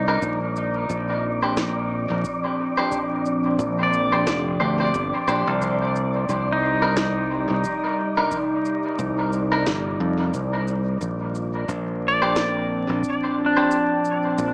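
A warbling, dark tape-like pad holding sustained chords, twangy pedal steel arpeggios with dub echo, a punchy, up-front fingered electric bass and an airy, wind-like tuned noise layer open this deep, hazy ambient dub fragment at 89 BPM, soon joined by clean, scooped electric guitar stabs echoing into the distance, an overdriven electronic cabasa and woody snare, and a deep analog kick that sits in the background until 13.2 s, all moving through Bb69, Cmadd9 and Bbadd9 in a spring-reverb-soaked, echo-heavy mix with vinyl crackle and a small-speaker sound.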